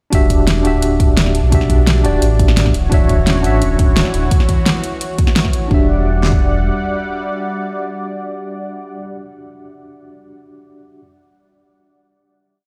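Punchy, up-front electronic drums drive this short, melancholic and dreamy liquid drum and bass piece, with two layered kits pairing a fat snare and two-step kick against metallic closed hats in a rolling two-step pattern, all with a tape-softened edge. Beneath them, a deep, full sine sub bass with an added octave holds long gliding notes just as prominently, while a clean tine electric piano heard through a combo amp plays held drop-2 chords with syncopated pushes, colored by medium tremolo and dub echo. A smooth, detuned sawtooth analog pad sustains chords with chorus, a moving notch and sidechain pumping. At 2.9 seconds a very quiet, harp-like triangle pluck enters, ringing and dark under a filter sweep, cycling a six-step arpeggio that drifts against the bar. The harmony moves from Em9 to Dmaj9 and returns to Em9, as the drop gives way at 5.7 seconds to a final chord carried by the pad and the electric piano, which lingers until 11.0 seconds. 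The sound stays dry, yet carries the stony ambience of a big sound system in a bare room.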